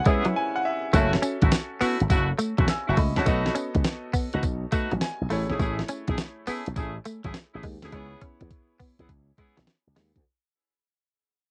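New jack swing R&B excerpt in C# minor at 103 BPM with a bouncy, punchy swung feel, where an up-front, sampler-style drum machine with a thumpy kick, fat snare, hi-hat and tambourine plays alongside a growly, envelope-filtered slap bass entering at 0.9 s, while a brilliant grand piano opens with a fill, a twangy picked guitar with subtle chorus plays a riff, and a vintage horn section adds tight stabs over C#m7, F#m7, B7 and Amaj7 chords, the whole take carrying the dry character of a home cassette recording as the music fades out and a drum fill arrives at 7.9 s.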